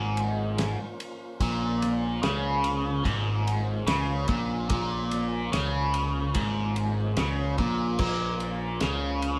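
Mysterious and hypnotic, this psychedelic rock excerpt in Bb minor moves at a straight 73 BPM in 4/4, with a biting, bright overdriven guitar riff, double-tracked and up front with phaser, riding over a dark, round overdriven picked bass, while a cloth-damped, thuddy drum kit with a fat snare, tight kick and dark crash and ride cymbals enters at 0.2 seconds and a full, clicking tonewheel organ holds sustained chords in the background through a slow rotary speaker, all captured as a band playing live in one room with moderate studio reverb over a single Bbm chord.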